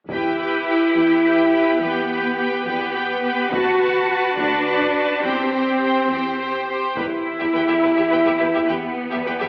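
A mellow, roomy French horn section holds sustained chords in this dramatic, heroic cinematic orchestral cue in E minor at 70 BPM in 6/8, beneath a bright, focused violin melody with vibrato and a clear, intense second violin line, while clear violas, lush cellos and smooth, rich double basses fill out the harmony over Em, D6 and C/E, taiko drums struck with hard sticks sit in the background until 8.1 seconds, and the whole passage carries a wet scoring-stage reverb heard from further back with an AM radio sound.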